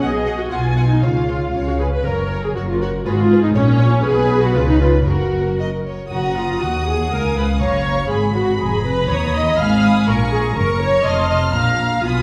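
A rubato pulse in two drives this quick, urgent and restless fragment of a classical-period movement for string orchestra, where a smooth, lush violin section carries the melody over a woody, softly attacked second violin line, a rich, up-front viola accompaniment, and a bass of focused cellos and dark double basses with expressive portamento, the ensemble heard from further back in a wet recital hall.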